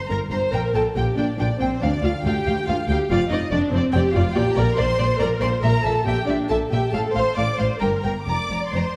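At 140 BPM in 3/4, this quick classical-period movement for string orchestra moves with a spirited, lively rubato feel, in a short passage cut from a longer piece. A symphonic violin section carries the melody with a smooth, even tone and vibrato, while a focused studio violin section plays a second line. The viola section sits up front and close, its soft attacks and expressive portamento giving the accompaniment a lush warmth. Cellos and double basses share the bass, the cellos rich and in the background, the basses distant with light vibrato. The harmony opens in G minor, passes through D minor, and settles into Bb major from 4.4 s before closing on an Fsus4. A wet scoring-stage reverb with a 1.6 s decay surrounds the ensemble.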